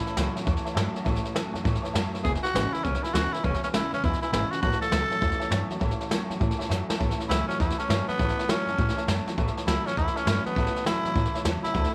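A raspy, growling tenor saxophone sits up front in this retro, upbeat rockabilly excerpt, its bright, gritty tone carrying the melody with a light vibrato in a poppy style before taking a solo from 7.0 seconds to the end. Beneath it, a pizzicato upright bass on gut strings gives a dark, thumpy, woody low end. A jazz kit played with brushes sits up front with a natural studio-room sound, a medium-tuned snare and a boomy kick, and it adds a drum fill at 6.7 seconds. In the background, an electric guitar through a small old amp plays a twangy, slightly broken-up riff bathed in spring reverb, while a detuned, jangly honky-tonk upright piano adds boxy vintage colour. A very quiet, full-bodied jumbo acoustic guitar is picked underneath, and the whole fragment swings over a light studio reverb.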